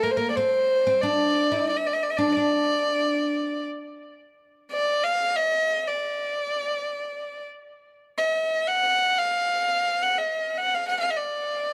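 Arabic maqam ensemble music in D maqam saba at 90 BPM in a straight 3/4, passionate and warm, cut from a longer piece. A single rich, up-front bowed violin carries the melody throughout with light vibrato, soft attacks and an airy sul tasto tone, while a woody, deep, plectrum-plucked fretless oud with double strings plays a second line until 3.7 seconds, all captured by close, detailed microphones with light reverb.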